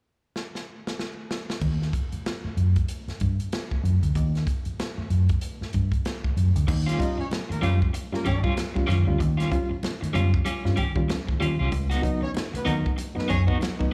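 A swinging big-band drum kit opens with a fill, its punchy kick and medium-tuned snare up front, before a dark, round, foam-muted fingered bass enters over Eb at 1.6 seconds in this playful 95 BPM funk groove in Eb mixolydian with swung sixteenths. At 6.7 seconds the harmony moves to Eb9 as a slightly broken-up electric guitar with tremolo and a barky, reedy electric piano with light overdrive and fast tremolo come in, both carrying plate reverb and slapback echo, joined shortly after by a mellow, tight horn section in octave doubling and very quiet, thick-skinned congas. The chords shift to Db9sus4 at 11.7 seconds, and the performance sounds like a live club gig heard through the venue's PA, with light reverb.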